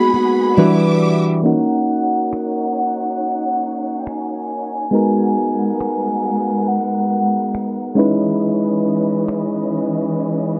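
Contemporary R&B at a slow 69 BPM in straight 4/4, this moody, late-night excerpt is cut from a longer piece and wrapped in a dark production with light reverb and a low-pass filter. It opens on a brief break where an up-front nylon-string guitar plays full-bodied fingerpicked arpeggios, finger squeak audible, alongside soft electric-piano-like synth keys and a lush, distant string section holding sustained chords, the guitar dropping out at 1.5 seconds. The round, airy synth keys, treated with chorus, carry the accompaniment throughout, while the bowed strings add expressive vibrato beneath. A mellow horn-like synth lead with a vintage, warbling character and soft attack sings the melody high in its register until 8.0 seconds, its vibrato and chorus lending it a dreamy sheen. Faint, tape-tinged electronic finger snaps enter at 2.3 seconds to mark time, as the harmony drifts through G#m9, Em7, D#m7 and closes on C#m9.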